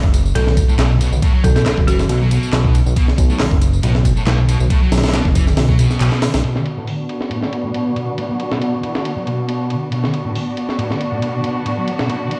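Breakbeat at 138 BPM in B minor, this funky, energetic cut rides a swung, gritty sampler-style kit with a thumpy kick and high-tuned snare, a fat, nasal analog bass up front, background electronic tambourine and handclaps, and a double-tracked fuzz guitar riff that enters at 0.4 seconds and runs to the end under sampler grit. A woody, rustic marimba phrase flickers through a telephone filter and delay in the opening seconds, and after a band accent at 6.0 seconds the bass, tambourine and claps drop out as a rich, biting string section enters with bowed stabs under a filter sweep from 6.4 seconds, alongside the kit and guitar. The whole mix sounds as if played on a big sound system in a bare stone room.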